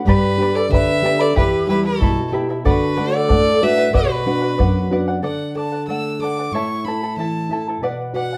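Andean folk at 93 BPM in 2/4, a short cut from a longer piece that feels both melancholic and festive, moving through G, Em, D and Bm before turning to D, A and Bm. A clear, earthy fiddle carries the melody up front with light vibrato, while a reedy, distant pan flute adds a soft second line until 4.9 seconds and a deep bombo drives the pulse until 4.7 seconds. Shimmering fingerpicked charango on double strings and a full-bodied, thumb-plucked nylon-string guitar fill out the accompaniment, and the ensemble sits in a wet studio reverb, heard from further back in the room.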